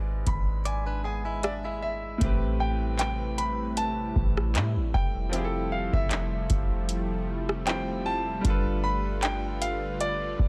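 Contemporary R&B at 77 BPM in A minor with a lightly swung 16th feel, longing and moody, cut from a longer piece and moving from E7/G# through Am9, Fmaj9 and G9. An intimate baby grand carries the melody with audible action noise and digital delay over a second, brilliant baby grand accompaniment, and a grand piano fill opens the excerpt, while a clean, sine-like 808-style bass and a dry, booming analog drum machine with deep kick, metallic hats, handclaps and rim click sit up front. A twangy, direct-recorded clean electric guitar picks delayed arpeggios from 0.7 to 2.2 seconds, where a smooth, detuned sawtooth pad with chorus and sidechain pumping takes over with sustained chords, all in a close, nearly reverb-free sound.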